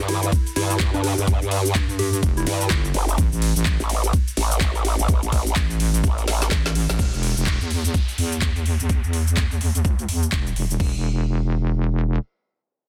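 Dry, dense and heavily limited, this aggressive, bouncy bass house cut opens on a drop where a bright, formant-filtered growl bass, joined at 1.8 seconds by a heavy square-wave wobble bass, pumps against an overdriven, knocking electronic kick and a garage kit of woody snare, metallic hats, handclaps, shaker, crash and ride, while a round, FM keys-like lead with dub echo sits in the background until 2.8 seconds, and after a drum fill the wobble bass carries a filter sweep from 7.0 seconds beneath an electronic downlifter.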